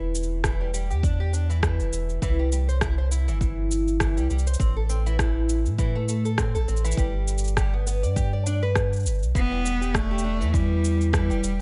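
A fingerpicked twelve-string acoustic guitar with dark, woody, shimmering strings rolls out arpeggios over a round sine sub bass and a tape-warm electronic shaker and rim click, joined by a deep electronic kick in a swung, pastoral and hopeful folktronica groove moving from Em7 through C, Am and G, before an up-front bowed cello with focused vibrato enters at 9.4 seconds, all set in a digital ambience in this excerpt from a longer piece.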